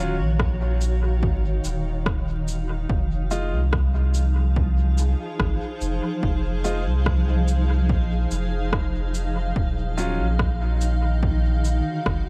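A blurred, detuned granular cloud pad with built-in reverb, woody upright piano stabs trailing dub echo and a round, up-front sub bass open this deep, spacious ambient dub excerpt at 72 BPM over vinyl crackle, with a punchy, overdriven electronic kick and a dub-echoed rim click and cabasa joining at 0.4 seconds as the harmony moves from Ebm9 to Fm7 and back to Ebm9.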